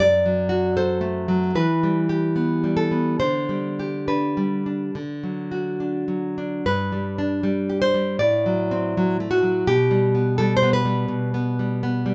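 Nostalgic and sunny, this short romantic excerpt for solo classical guitar sits in G major, moving in 4/4 at a rubato pace that drifts between 68 and 84 BPM. A lone nylon-string guitar carries everything from 0.0 to 12.1 seconds, fingerpicked and full-bodied, placed up front with a warm acoustic tone that spans from F#2 up to D5. The opening phrase passes through D/F#, Em, G/D and D before a second section begins at 6.7 seconds, settling on G and moving through D7/A to G/B. A wet studio ambience gives the instrument a gentle halo of reflections. Cut from a longer piece, it feels like a tender fragment of a larger reverie.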